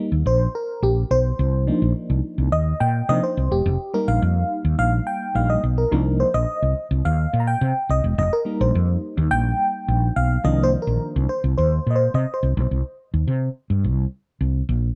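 A tremolo-laden FM electric piano takes the lead from the start, its warm, fast-attack tones decaying through a phaser with a faint noise layer, as it moves between rootless F9sus4 and Cm11 chords in this late-night, slick early-eighties boogie funk excerpt. A growly, hollow-body fretless bass sits up front beneath it with a woody, amped tone, then carries on alone from 12.7 seconds once the piano stops. Light reverb and digital ambience wrap the dark, warm production.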